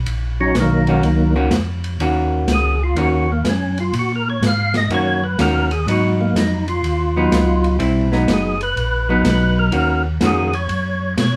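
A fat, lightly overdriven tonewheel organ leads this smoky, late-night soul jazz organ trio excerpt, soloing in Eb minor at 124 BPM in a swung 4/4 with a percussive third-harmonic attack, key click, chorus vibrato and a slow rotary speaker. Beneath it, a second tonewheel organ, mellow, round and clean with its own chorus vibrato and slow rotary, carries the bass line, while a picked hollow-body electric guitar adds up-front accompaniment from 0.9 seconds, and a smooth acoustic drum kit with dark cymbals and a medium-tuned snare plays hi-hat, ride and snare. The band plays live together in one room with moderate reverb, moving from Ebm7 to Abm7 and back.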